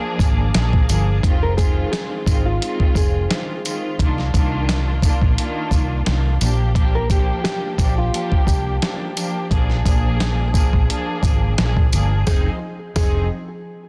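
Tough and gritty, this boom-bap hip-hop excerpt moves at 87 BPM in 4/4 with a swung sixteenth-note feel, set in F dorian. A dusty, sampler-style drum kit sits up front with a thumpy kick, medium-tuned snare and hi-hat, its compressed, tape-warmed sound re-recorded in a large room, while a jingly tambourine adds quiet percussion. A dark, foam-muted fingered electric bass holds the low end with a round, punchy tone, and a lush bowed string section carries the accompaniment with intense vibrato and a cassette-tape coloring. From 1.4 seconds a small, fingerpicked nylon-string guitar plays the melody, filtered and touched with delay. A reedy, lightly overdriven tonewheel organ with slow rotary speaker appears very quietly at the opening and again from 9.5 seconds, over chords moving from Bb7 through Fm7, Cm11 and Gm7/Bb, all wrapped in a small room reverb and a dense, heavily limited master.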